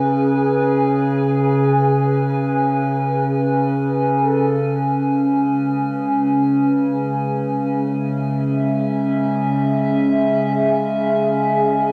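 Melancholic and spacious, this short ambient excerpt in C# minor drifts in free time, opening with a warbling, nostalgic pad of detuned, wave-folded tones that sits up front, holding sustained chords with a slow attack and long release through chorus and its own reverb. A mellow, smooth-topped flugelhorn plays a brief classical-style solo melody between G#4 and A4, softened by cassette tape and tape echo, until 4.8 s, when the harmony settles from G#m/C# onto C#m. At 5.7 s a low analog drone of detuned sawtooth and pulse waves joins, evolving with pulse-width modulation and chorus, all set in a damp booth ambience with the lo-fi character of a home cassette recording.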